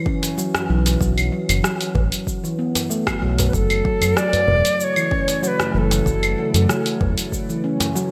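A ringing stainless-steel handpan plays delayed arpeggios up front throughout this earthy, meditative organic downtempo excerpt at 95 BPM in F# minor, set over a tape-warm, deep electronic kick, an up-front deep house kit of cabasa, claves, hi-hat and rim click with gated reverb, a cracking djembe in the background and a smooth, dark gliding synth bass with portamento. At 3.5 seconds a bright, reedy cedar flute enters with vibrato and digital delay as the harmony moves from a thirdless B7 to F#m7, and at 4.6 seconds a warbling, nostalgic lo-fi pad with chorus and sidechain pumping joins in the background. A lush hall reverb and 1980s-style digital production frame the whole mix.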